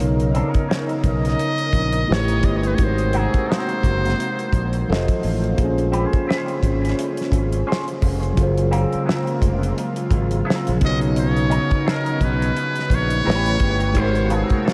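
A lightly swung sixteenth-note groove in 4/4 drives this introspective, smooth neo-soul R&B excerpt, carried by a cloth-damped drum kit with a fat snare, tight kick, hi-hat and a rolled-off top, all sounding like a small room. Under it, a bright, punchy fingered electric bass sits direct and up front in a low register. A mellow tine electric piano plays clean accompaniment through its built-in speakers, while a lush, thick sawtooth pad with detuned unison and chorus warbles in the background, holding slow-attack chords with a long release through changes such as Bmaj9, Bbm9 and Gbmaj9#11. From 0.3 seconds an electric guitar through a small old amp adds a quiet, slightly broken-up, lo-fi second line with wah and analog delay. A trumpet with a metal mute carries the melody from 1.1 seconds and returns at 10.8 seconds: brilliant yet buzzy and thin, breathy, with light vibrato, scooped notes and an analog delay in a jazz solo style. 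A huge ambient reverb soaks the mix in a dreamy haze.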